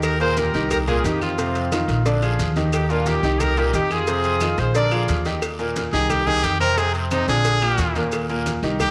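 Festive and sunny, this short cut from a longer salsa piece moves at a brisk 178 BPM in Eb major, cycling through bright changes like Eb, Cm7 and Bb7. A brilliant, punchy horn section carries the tight, up-front melody with a touch of tape echo until 5.1 seconds, while a clear, polished concert grand piano with deep bass and short sustain plays accompaniment throughout. Underneath, a dark, thumpy upright bass plucks woody steel-string lines low in its range. The percussion sits further back: low-tuned congas played with soft hands, a tight high-tuned cowbell, woody claves, a raspy, saturated guiro and grainy, mellow maracas. At 5.9 seconds a forceful trumpet solo with vibrato takes over the melody up front, all of it set in a moderate echo-chamber reverb.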